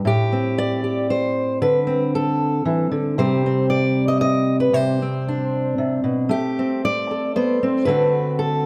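In a straight 3/4 at 115 BPM, this short, pastoral folk passage from a longer piece features a solo fingerpicked steel-string acoustic guitar, dark and up front with audible finger squeak, moving from Am7 through D5 and Csus2 back to Am7 before reaching D7, all set in a moderate stage reverb.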